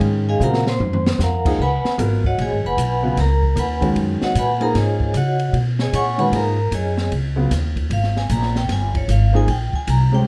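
This modal jazz excerpt opens with upright piano, upright bass and an open jazz drum kit together, and the vibraphone enters at 0.3 seconds to carry a solo through the rest of the clip. The mood is hypnotic and spiritual, a swung 4/4 at 152 BPM in Db mixolydian, with suspended harmonies such as Ab13sus4 and Db9sus4 beneath the melody. Played with medium hard mallets and a medium motor vibrato, the vibraphone sounds metallic and ringing, placed up front in the mix. The pizzicato bass on steel strings is woody and dark and also sits forward, while the piano accompanies with a smooth, vintage tone. The drums play a short fill from 0.4 to 1.2 seconds, and the acoustic kit is heard in a studio room with dusky cymbals, a high-tuned snare and a boomy kick, all within light reverb and a warm production.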